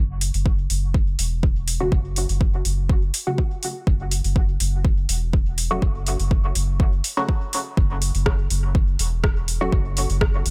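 Meditative and deep, this short dub techno excerpt moves at a steady, straight pulse. A round, soft sub bass built from triangle and square waves sits up front from the very start, its sustained notes breathing with sidechain pumping. A deep house kit comes in first, its metallic hi-hats and rim clicks carrying their own gritty drive, and an overdriven electronic kick soon joins, hitting deep and up front. At 1.8 seconds a muted, detuned sawtooth chord stab arrives, its filtered pluck shimmering through chorus and phaser and trailing off into dub echo while sidechain pumping makes it breathe. The whole track sits in a digital ambience that lends a spacious, hypnotic depth.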